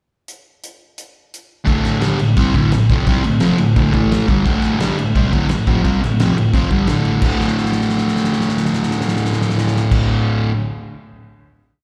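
A cloth-damped, thuddy drum kit with dark cymbals, a fat snare and a tight kick opens this rowdy, swaggering garage rock piece at 173 BPM with a pickup bar, before an up-front, double-tracked fuzz guitar enters at 1.6 s with a compressed power-chord riff on D5 and A5, arriving at a final chord at 7.2 s while the drums play a fill, the performance heard as a live gig through the venue's PA with light recital-hall reverb.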